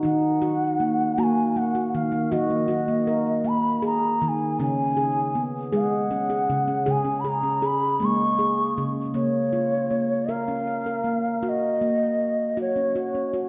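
Gentle and meditative, this world excerpt moves at a slow 53 BPM in 6/8 in E-flat minor, with a ringing stainless-steel handpan played with soft fingertips laying down delayed arpeggios while a mellow, hollow bamboo bansuri carries the melody up front with vibrato and a crisp attack, both bathed in a wet echo-chamber reverb as the harmony shifts toward B-flat minor at 9.2 seconds.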